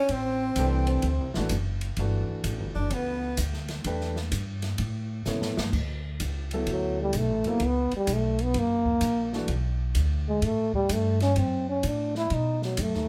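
A relaxed swing feel at 128 BPM in 4/4 drives this short cut of small-group jazz in D major, with an upright bass giving a woody, growly pulse and an open drum kit of dark cymbals and a boomy kick playing throughout. A breathy trombone with scooped notes and vibrato carries the melody alongside an edgy, forceful tenor saxophone for the first 3.4 seconds, while an upright piano with long sustain fills in the harmony until 9.5 seconds. After a drum fill, the trombone takes a solo from 5.7 seconds, heard in the light reverb of a band playing live in one room.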